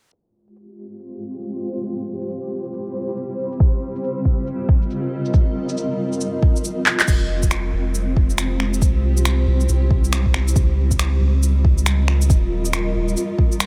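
A blurred, evolving granular cloud pad carries this melancholic, nocturnal future garage excerpt. Its detuned unison chords drift through a moving notch and the pad's own built-in reverb, breathing with sidechain pumping. An organic electronic drum kit of crash cymbal, finger snaps, handclaps and shaker sits up front with a swung sixteenth-note feel, tape-warm and re-recorded in a large room, while a filter sweep runs across the opening section. A deep electronic kick drum joins at 3.6 seconds, and a drum fill at 6.9 seconds leads into the second section, where a soft dub sub bass arrives at 7.1 seconds, round and sustained with a fast attack and its own sidechain pumping. The chords cycle twice through Fmadd9, C, Dbadd9 and Eb, with a light reverb and low-pass filter shading the whole mix.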